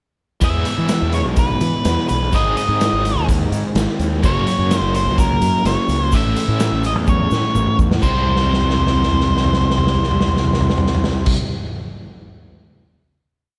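At 0.4 seconds this hypnotic, mysterious psychedelic rock piece starts with a punchy, up-front garage drum kit; a ringing, double-tracked overdriven guitar riff with tremolo; a round fuzz bass riff with syncopation; a dark octave-fuzz lead guitar playing a motif-based melody through slapback echo; and a grainy shaker in the background, all in a small room, moving through E, Ab, F# and A before a drum fill at 7.1 seconds leads into a final C chord at 8.0 seconds, with further fills from 8.3 to 11.3 seconds before the drums end at 11.4 seconds.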